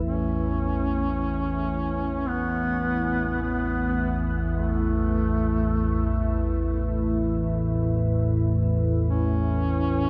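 A mellow, folk-style duduk sings a vibrato-laden melody with scooped notes, sounding distant under shimmer reverb and delay, over a deep, moody analog pad of sustained Asus2 chords colored by chorus and phaser, and an evolving, detuned low analog drone with pulse-width modulation and subtle chorus, all sitting in a huge reverb-soaked space in this desolate dark ambient drone piece in A major at a slow 53 BPM, heard as a 10.1-second cut from a longer work.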